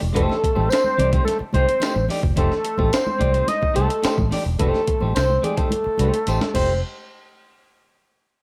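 Funky and playful, this short excerpt from a longer funk piece sits on a single rootless F9 chord in a straight 4/4 groove. A fat sawtooth analog lead with a sub octave carries the melody up front, its sustained, fast-attack notes colored by vibrato and a moving notch. Underneath, a vintage foam-muted fingered electric bass gives a round, punchy, dark low end, while a clean, picked electric guitar supplies warm accompaniment. A compressed, sampler-style breakbeat kit with a thumpy kick, high-tuned snare, hi-hat and crash cymbal sits gritty and forward, and it plays a fill from 5.7 seconds. Close, dry congas with a thin, bright skin and a jingly tambourine heard from a distant, large room add texture in the background. Light reverb surrounds the mix, and the parts stop at about 6.8 seconds, where a chordless closing section begins.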